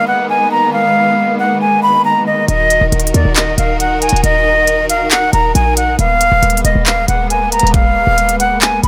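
Hip hop in a trap vein at 137 BPM with a half-time feel, this eerie, hard-hitting excerpt opens with an airy concert flute carrying the melody in a straight, unsteady tone with tape echo, over lush, biting bowed strings holding sustained chords around Abmadd9/Eb and Ebm. At 2.5 seconds a punchy, tight 808-style bass with a sine body and noise layer joins an up-front electronic trap kit of knocking kick, crisp hi-hats and handclaps. Everything plays through to the end at 8.9 seconds, set in light reverb with small room ambience.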